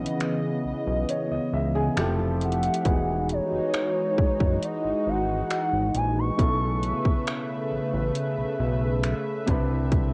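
Smooth and romantic, this contemporary R&B excerpt floats a gliding, sine-toned portamento lead with vibrato, chorus and analog delay over a grand piano, a lush, evolving unison pad and a fat, detuned analog bass thickened by transformer saturation. An electronic trap kit of finger snaps, metallic hats and a hard-clipped kick sits up front, while a dark, thumb-plucked flamenco guitar with finger squeak appears in the background from 1.8 to 2.8 seconds. The lead falls away at 7.9 seconds, and light reverb and a home-cassette character color the whole.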